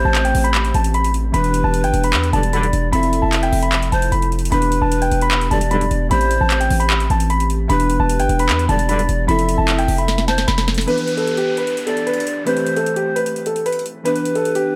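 Dark and melancholic, this short cut from a longer trap-style hip hop track moves at 151 BPM in a half-time 4/4 feel, centred on E phrygian over chords that circle through Am7, Em7 and Fmaj7. A dark, mellow concert grand piano carries the melody with a natural tone and deep low end, while breathy, reedy pan pipes with audible chiff and vibrato add a close-miked second line coloured by tape echo. Glassy digital keys with chorus and a filter sweep fill out the accompaniment, and a warm brass ensemble with light vibrato and a soft attack drops in for brief classical-style stabs. Underneath, a heavy, punchy 808-style bass sits up front until 10.9 seconds, and the electronic, overdriven drum kit brings a sharp snare, metallic hi-hats and handclaps, with a drum fill from 10.1 seconds. A downlifter drifts in the background at the start and again in the closing section, all in a dry mix with little reverb.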